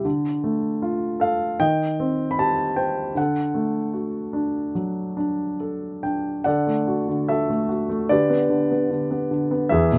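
Calm and peaceful, this brief passage from a longer classical piece features a lyrical solo grand piano played with gentle rubato and an uneven, breathing pulse, its warm, intimate, natural tone sitting up front under close, detailed microphones that catch the audible mechanical noise of the action within a light reverb, as the harmony drifts through shadowed minor chords before settling into a brighter major section at 6.5 seconds.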